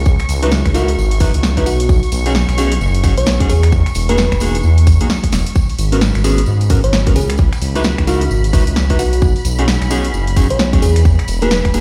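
A skippy two-step garage groove swings its sixteenths, driven by a tight, overdriven electronic kick pushed up front and a punchy analog drum machine supplying finger snaps, hi-hat and a tape-warm snare, with a drum fill at 5.3 seconds. A jingly, close and dry tambourine sits in the background, while a dark, detuned sawtooth bass rumbles deep and beating beneath everything. A clean, fingered electric guitar adds mellow stabs with subtle chorus and digital delay, and a bell-like FM electric piano carries a sparkling, decaying melody treated with chorus, cassette tape colour and delay. Behind them, a silky vintage string machine holds soft sustained chords through ensemble chorus and sidechain pumping, as the harmony moves through extended chords such as C#m11, B69, Emaj9#11 and G#m11. The moody mix sounds as if played on a big sound system in a bare stone room, and this short section is cut from a longer piece.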